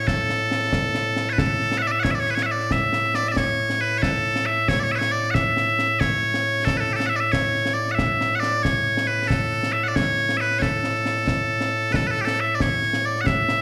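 Heard live through a club PA with club reverb and a touch of studio ambience, this proud, stirring piece of Scottish pipe music in 6/8 is cut from a longer performance. Loud, piercing bagpipes carry the continuous solo melody up front from the first moment, ringing with a slapback echo. Joining at 0.1 seconds, a concert snare drum and concert bass drum sit further back with an acoustic, small-room sound and dark cymbals.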